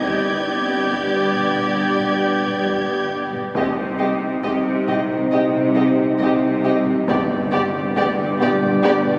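Cinematic suspense film score at 68 BPM in C harmonic minor, uneasy and tense, moving from G to C minor and back to G in this short excerpt. Muted violin sections carry a veiled melody and a second line over hushed con sordino violas, dark cellos and double basses. A mellow French horn section holds sustained chords in the background above a very quiet, detuned organ-like drone. A close, high violin texture hovers until 3.1 s, and distant taiko drums struck with hard sticks sit faintly beneath it all, bathed in a long church reverb with a phone-in-the-room ambience.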